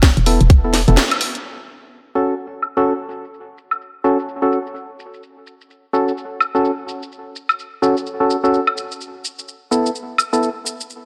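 A dark, percussive organ stab sits up front in this bouncy, gritty bass house excerpt, entering at 0.3 s with a sine-and-triangle tone, a noise layer, chorus, tape echo and sidechain pumping. At 127 BPM in 4/4, with a 60% swing on the 16ths, the groove sits in F# minor and moves from Esus4 to F#m and back to Esus4. A hollow, knocking FM bass with a punchy, fast-attack bite pumps under the opening along with a tight, layered electronic kick, and both parts fall away early, the bass stopping on a band accent at 1.0 s. A brief break follows before a filter sweep on the drums begins at 1.4 s. Throughout, a produced garage kit of hi-hat, shaker, cracking snare and woodblock runs up front, its hats, snare and percussion softened by low-pass filtering. A lush hall reverb with a 1.9-second decay lends the mix a spacious tail.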